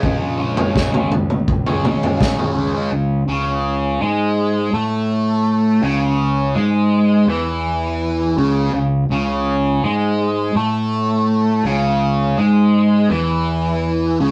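Trippy and hypnotic, this short psychedelic rock excerpt in C# minor moves at 82 BPM in a straight 4/4, with a bright, double-tracked fuzz guitar riff running throughout over a round, punchy overdriven fingered bass that enters at 0.2 seconds, while a muffled, lo-fi vintage drum kit of kick, snare and toms plays only until 2.6 seconds, all captured in a rough rehearsal-room sound with tube saturation and moderate studio ambience.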